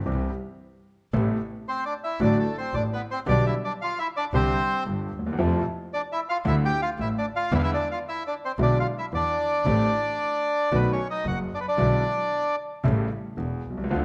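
Passionate and tense, this short cut from a longer tango moves at 113 BPM in 4/4 with a rubato feel, set in A minor. A concert grand piano carries the accompaniment throughout, intimate and up front with deep bass, a smooth vintage tone and audible action noise. Beneath it, a single bowed double bass plays the bass line with a biting, intense sound, close and airy, with vibrato. The bandoneon enters at 1.7 seconds to take the melody, reedy and vintage with a band-limited character, sitting up front and slightly louder than the other parts before it finishes at 12.6 seconds. A brief stop between 0.6 and 1.1 seconds marks the shift into the second section, where the harmony travels from Amadd9 through Fmaj7 and E7 toward a closing A7. The production is dark and warm, bathed in a wet, large studio reverb.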